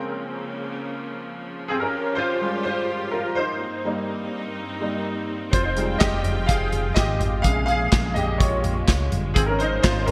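A polished, up-front baby grand piano carries this uplifting piano-driven pop excerpt at 125 BPM over a close, lush bowed string section with vibrato, moving through Bbm7, Fmadd9 and Cm7/G chords, until a glossy, chorused pulse-and-sawtooth synth bass and a dark, smooth acoustic drum kit with a tight kick, snare, toms, hi-hat and handclaps join at 5.5 seconds, all set in a hall reverb with a bright 1980s-style digital sheen.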